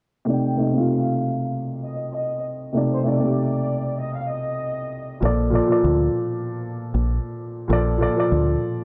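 Reflective yet tough, this short boom-bap hip-hop cut at 97 BPM in C dorian sets a dark, mellow concert grand piano with cassette-tape colouring up front from 0.2 s, while a distant, biting violin section carries the melody with tape echo until 5.2 s, when a round, foam-muted dub bass enters over the Bbmaj7, all in a dry, gritty room under a filter sweep.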